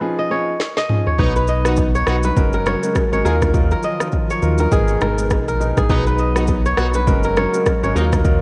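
A swung 102 BPM afrobeats groove in F# major opens on a brief break where piano and a crisp, ringing fingerpicked kora riff with analog delay play before the tape-flavored afro-pop drum kit, with its deep kick, woody snare, rim click, shaker and toms, enters with a fill at 0.6 s. From 1.2 s the round, dark analog bass sits up front alongside very quiet, band-limited congas and bongos, while a punchy horn section with light vibrato and delay carries a second line. From 1.5 s a hollow, flute-like pad with chorus holds mellow chords in the background, and the polished grand piano keeps comping. The mood is romantic and breezy, with light studio reverb and a homespun cassette character, and a barely audible electronic riser slips in at 8.2 s as this excerpt from a longer piece ends.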